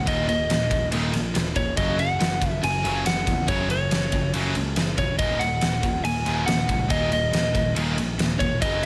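Menacing and aggressive, this hard rock fragment in Eb minor drives at 140 BPM in a straight 4/4. A huge, up-front arena drum kit with punchy kick, fat snare and ride cymbal enters at 0.1 seconds alongside a slightly broken-up, compressed lead guitar melody carrying tape echo. It sits over two background riffing guitars, one sludgy and overdriven and one tight and bright with distortion, and a picked electric bass that is direct, amped and punchy, all set in a moderate large studio reverb with small room ambience.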